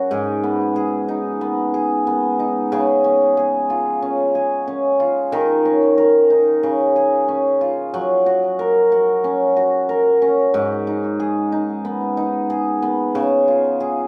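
A straight 4/4 pulse at 92 BPM carries this delicate, playful folktronica excerpt in F# major, where a solo cimbalom, hammered and shimmering up front with digital delay in light reverb, rings through chords from G#m to C# across its 14.1 seconds.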